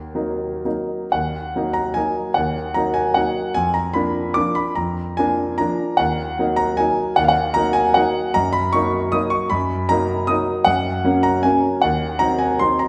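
A concert grand piano sounds alone from the first moment, playing a classical waltz in Eb minor with an elegant, nostalgic air. The pulse is in 3/4 but moves freely with rubato, the tempo shifting between 117 and 163 BPM. The piano's tone is clear yet worn, with a deep bass, and it sits up front and natural across a range from Eb2 to Eb6. The harmony moves from Eb minor through Bb7/F and back, then turns toward Gb and settles on a Cdim/Eb chord near 11.8 seconds. A reverberant recital hall gives the sound a lingering tail, as in a church or concert hall, and the passage is cut from a longer piece, ending at 12.9 seconds.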